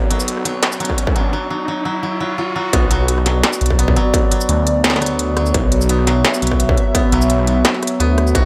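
Half-time drum and bass at 171 BPM with a slight swing in B minor sets a tense, cinematic mood in this excerpt from a longer piece: a dark, moody analog pad holds a Bmadd9 chord through chorus, phaser and sidechain pumping, while a dry, woody koto plays fingerpicked arpeggios through tape echo and a swirling, thick, detuned saw bass sits up front. An electronic riser runs through the build-up until the drop at 2.7 seconds, the up-front industrial kit brings a clanging snare, smooth hats, rim click and shaker from 0.1 seconds, and a distorted electronic kick joins at 0.9 seconds, the whole mix set in a lightly reverberant space.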